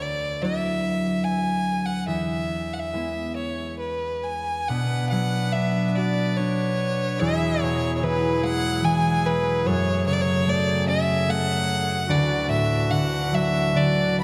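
Tender and nostalgic, this Celtic slow air in E mixolydian drifts in a rubato 3/4 at around 67-75 BPM, with a clear, focused single fiddle carrying the bowed melody up front with light vibrato over ringing, fingerpicked concert harp chords, while a reedy, hollow accordion, close-miked and dry, enters at 4.7 seconds with full sustained chords beneath them, all set in a spacious church reverb.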